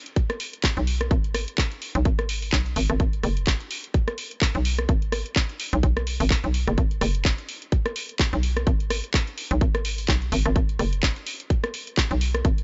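Dry and close, with little reverb and a top end that stops around 7.7 kHz, this short bass house cut from a longer piece has a swaggering, bouncy character at 127 BPM in 4/4, with a 57% swing on the sixteenths and a G# minor centre tuned to A4 = 439 Hz. A garage drum kit of handclaps, hi-hat and rim click arrives at 0.1 seconds, layered and produced, with warm hats that sit up front after being re-recorded in a small room. A tight, layered electronic kick joins almost immediately and carries the same small-room, up-front placement. At 0.8 seconds a hollow, knocking FM bass enters between F#1 and B1, punchy with a fast attack and a decaying tail, its tube saturation and sidechain pumping giving it a bouncy push. All three parts run together to the end of the 12.6-second passage as a single groove-driven section.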